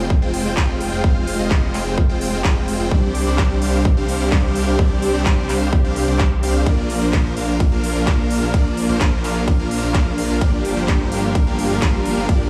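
Festival progressive house with an emotional, powerful feel, this excerpt drives forward on a punchy, overdriven electronic kick up front, joined by a big-room dance kit of handclaps, crisp hi-hats and ride cymbal that also carries overdrive and sounds re-recorded in a large room. Huge, lush supersaw chords lead with a detuned, full-bodied riff, pumping against the kick and trailed by tape echo, while a thick detuned saw bass with chorus and saturation holds the low end. In the background, a rich chamber string section bowed with light vibrato sustains earthy chords through Fm, Csus2, Bb and Gm7, all three melodic layers breathing with sidechain pumping in a dry, small-room space.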